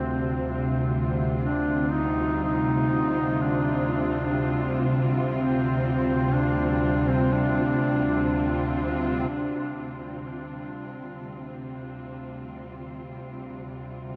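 Dark ambient drone in free time and D phrygian, this excerpt feels unsettling and shadowy from its opening Dm7 chord. Beneath everything sits an organ-like drone in the low register, a calm, warbling, vintage sine tone with slow attack and long release, thickened by ensemble chorus and its own reverb, sounding for the full 14.2 seconds. A muted chamber cello section plays sustained bowed chords con sordino, veiled and vibrato-laden, heard across the whole passage. A distant, roomy duduk carries the melody in a narrow range from C4 to Eb4, its soft attack, scooped notes and folk-style vibrato trailing into tape echo before it stops at 8.8 seconds. Faintly underneath, an eerie, inharmonic FM synth bell traces arpeggios with fast, decaying strikes until 9.3 seconds, when the piece moves into a sparser second section. The dark production is soaked in a huge reverb with a 7.2-second tail, giving the whole a cavernous, brooding space.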